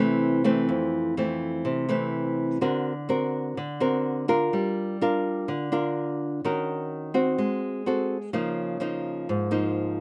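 In a straight 4/4 bossa nova feel, this sunny, breezy fragment of a longer piece is carried by a lone fingerpicked nylon-string guitar, small and up front with a woody, old-strings tone, moving from a rootless Fmaj7 through D7alt, Gm7, Ebm7 and Ab7b9 to Db69 under light reverb in a rough home demo mix.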